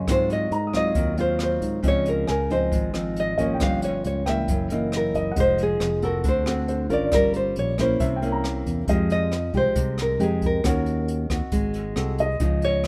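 A dry recording with little reverb opens on a wistful, smooth bossa nova in a straight 4/4, cut from a longer piece. An up-front, thumb-plucked nylon-string guitar carries the melody over a second, darker nylon-string guitar comping below it, while a clear, intimate baby grand piano adds high accompaniment with audible action noise and short sustain. A round, punchy fingered electric bass and a small-room brush kit with a boomy kick, hi-hat and rim click hold the groove, moving through rich chords like Ab13, Dbmaj9 and C7b9 before a new section arrives at 8.9 seconds.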